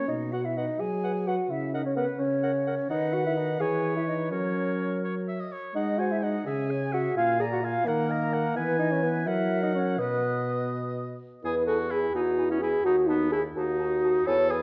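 In a straight 6/8, this quick, cheerful and graceful classical-period movement for wind quintet, cut from a longer piece, sets an airy flute melody with vibrato and a soft attack in the background over a clear oboe second line, mellow clarinet accompaniment, a warm, smooth-topped French horn up front and a bassoon bass with light vibrato, heard in a wet recital hall through worn, warbling old cassette tape with pitch drift, and moves to a new section at 11.4 s.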